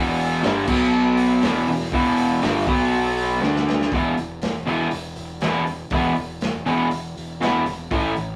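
Driving along at a straight 120 BPM in 4/4, this raw, swaggering garage rock excerpt puts a dark, double-tracked overdriven guitar riff up front over power chords on E, B and D, backed by a round, fuzz-drenched picked electric bass and a gritty, saturated breakbeat drum kit with dark cymbals and a tight kick, whose fill at 3.4 seconds kicks the song into a new section at 3.9 seconds, all captured in a rough rehearsal-room recording with moderate reverb.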